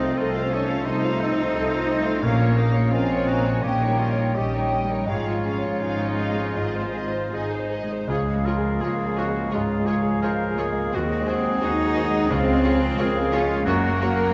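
An intimate concert grand piano leads this passionate, lyrical romantic movement for piano and orchestra, its up-front melody carrying deep bass and audible action noise in Db major at a rubato 79-89 BPM in 4/4. Soft sul tasto violins float a pure melody above, while airy flutes, a lone oboe, a distant clarinet and a woody, far-off second violin section weave second lines over close, quiet violas, hushed mellow horns and dark trombones in sustained chords, and background cellos and double basses. A wet concert hall reverb surrounds this section of a longer piece, moving from F7/C through Bbm and Ab7/Eb to settle on Db before turning to Gb at 13.7 seconds.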